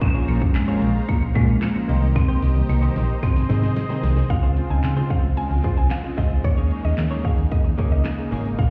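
Heard muffled through a wall, this confident, energetic dance-pop excerpt carries the echo of a stone room and a light reverb. A woody, dry marimba struck with hard mallets carries the melody until 4.0 seconds, and a mallet-like FM synth pluck takes over the tune at 4.3 seconds, bright and decaying with chorus, dub echo and sidechain pumping. Underneath, a worn, slightly out-of-tune tine electric piano sits in the background, while huge, detuned supersaw chords hold lush sustained harmony, both pumping with the sidechain. A round, dark hollow-body bass stands up front and pumps as well, and a clean, direct-recorded electric guitar plays a compressed, picked riff with subtle chorus. The punchy, layered pop drum kit brings a fat snare, metallic hats, kick and handclaps, with a drum fill from 2.2 seconds, as the chords move from Bbm7 through Cm7 and Ab to Dbmaj7 and Eb7sus4.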